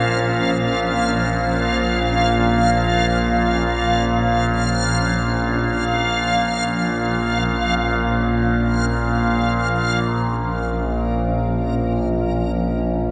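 Dark ambient drone in free time, cut from a longer piece, with a cavernous, dark mood held over a single minor chord. Up front, an overtone-sweeping drone sits low, its nasal, resonant tone built from sawtooth and sine waves with moving overtones, slow attack and long release, thickened by chorus and its own reverb. Also up front, a backwards swelling texture floats higher, reversed and dreamy, its detuned triangle tone granular and soft in attack. Behind them, a granular cloud pad holds sustained chords, bright yet blurred and evolving, with a unison triangle sound that fades out over the first 10.1 seconds. All three parts sound for the whole 13.1 seconds, set in a wet cathedral reverb with a 5.2-second decay that gives the recording its cavernous space.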